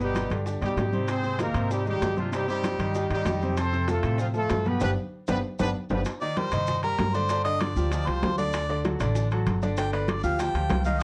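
A worn, warbling cassette sound with drifting pitch colors this driving, passionate salsa fragment, heard in a modest small room and cut from a longer piece. Up front, a brilliant, close-miked horn section carries the melody in octave doubling with light vibrato, while a bright grand piano with audible action noise and long sustain supplies the accompaniment. Underneath, a woody, growly pizzicato upright bass sits forward with transformer saturation. Congas, ringing metal-shell timbales and grainy maracas keep a percussion bed in the background, with very quiet, round bongos beneath them. The band hits an accent from 4.8 seconds, the horns dropping out at 6.0 seconds, and at 6.2 seconds a clear, punchy harmonica takes a solo with scooped notes and vibrato, treated with analog delay.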